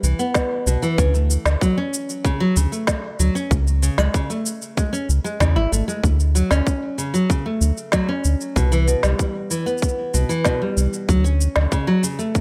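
A fingerpicked nylon-string guitar stands out at the front of this playful folktronica excerpt, its woody, old-stringed classical tone spinning arpeggios from B2 to E4 through a digital delay. The piece moves at 95 BPM in a straight 4/4, with the harmony shifting between Cmaj7, Dmaj7 and Amaj7/C#. Beneath it, an up-front round analog bass blends sawtooth and sine into a deep, dark, sustained sound with a fast attack, holding until 11.7 s. A tight, overdriven electronic kick joins at 0.3 s, and an electronic cabasa and snare, also overdriven, sit lower in the mix, both re-recorded in a large room. A layer of digital ambience adds space, giving the whole a warm glow.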